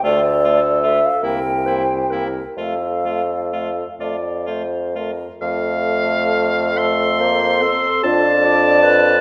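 A wet recital hall reverb surrounds this short cut from a longer classical piece, a slow romantic movement for wind quintet in 6/8, played with free rubato phrasing and a serene, lyrical mood. A hollow, pure-toned flute carries the melody with vibrato and a soft attack. A bright oboe, sitting up front, adds a second line alongside it. Beneath them, a distant, mellow clarinet and a clear, roomy French horn fill in the accompaniment, while a warm bassoon, also close to the listener, anchors the bass. All five instruments sound together for the whole 9.2 seconds, and the harmony moves from Dm through C7 to F before settling on F6 at 8.0 seconds. A new section begins at 5.4 seconds, keeping the calm, singing character intact.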